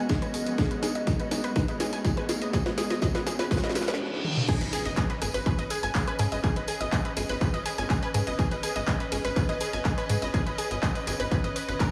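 Dark analog pad chords with a deep, detuned tone open this melancholic melodic techno excerpt, sitting behind a smooth bowed string section, a very quiet riser and reverse cymbal, and a bright, warbling unison pluck arpeggio that is filtered through the build-up, while a punchy overdriven kick and a house kit with a cracking snare play a drum fill and a jingly tambourine plays along. At 4.5 seconds the drop lands with an impact as the pad stops and a tight, driving sawtooth sequencer bass enters up front, its notes pumping against the kick. The echo-heavy mix carries dub echo on the pluck and analog delay on the house kit and tambourine, with sidechain pumping on the strings, pluck and cymbals.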